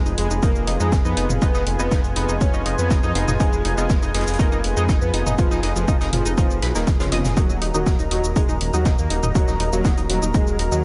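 A punchy, tape-warm electronic kick sits up front in this melancholic, hypnotic melodic techno excerpt, alongside a rumbling, detuned saw bass with tube saturation and a tape-warm analog drum machine of hi-hat, shaker and toms, while a warm acoustic street-band kit adds hi-hat and snare in the background. A tight, nasal sequenced synth drives arpeggios through chorus and delay, over a moody, dark analog pad and a muted, very quiet filtered dub chord stab with phaser. Behind them, a fat analog lead with vibrato and cassette-tape colour carries the melody beside a smooth, evolving supersaw second line, as the harmony moves from Fdim to Ebm at 7.4 seconds under sidechain pumping and light digital reverb.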